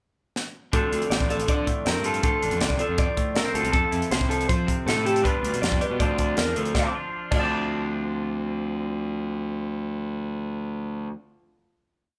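A crisp fusion drum kit drives a straight 4/4 pop groove at 159 BPM, entering with a fill at 0.4 seconds and stopping at 7.4 seconds, while a round, fuzzy, overdriven bass plays a syncopated riff up front in D minor. This restless, intricate piece of math rock and midwest emo sets a bright, twangy twelve-string electric guitar with spring reverb, played fingerstyle and syncopated over Dm7, Fmaj7 and G7, against a dark, slightly broken-up lo-fi guitar ostinato of arpeggios. The band sounds live together in one room with light reverb, closing on a final chord from 6.8 seconds.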